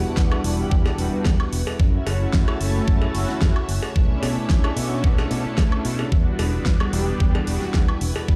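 A smooth, detuned sawtooth pad pumping with sidechain, chorus, analog delay and a filter sweep, a bright, growly fingered electric bass and a lush vintage string machine holding sustained chords through Em7, F#m7 and Bm11 open this sleek, sensual nu-disco excerpt at 111 BPM in E dorian. A knocking, overdriven electronic kick then enters up front at 0.2 s, together with a pop drum kit with a fat snare, hi-hat and woodblock, followed by a cowbell in the background, all inside a large studio reverb.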